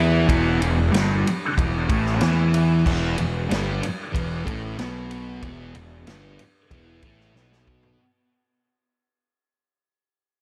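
An echo-heavy mix with light reverb and small-room ambience frames this dark, mysterious psychedelic rock fragment, which fades out across its full 8 seconds. A thick, double-tracked fuzz guitar riff carries distortion, phaser and tape echo up front, alongside an overdriven, picked electric bass with a fuzzy edge, both sounding from the start. A vintage acoustic drum kit with a tight kick, medium-tuned snare and rolled-off top enters at 0.3 seconds through tape echo, using crash, ride and toms, and closes with a fill from 7.4 seconds.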